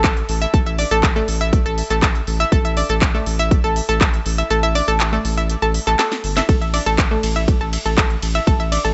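Driving and emotional, this short progressive house excerpt, cut from a longer piece, moves at 121 BPM in a straight 4/4 over an A5 chord. A round, bright analog pluck built from sawtooth and square waves with a sub octave plays arpeggios from A3 to E5, treated with chorus, digital delay and sidechain pumping, while a deep, thick saturated sub bass sits between G1 and A1 with tube saturation and the same pumping. A punchy electronic kick drops out from 4.5 to 6.5 seconds alongside a house kit of cracking snare, crisp hats, handclaps and ride cymbal, and a drum fill arrives at 6.0 seconds, all set in a digital ambience whose top end stops at 7.9 kHz.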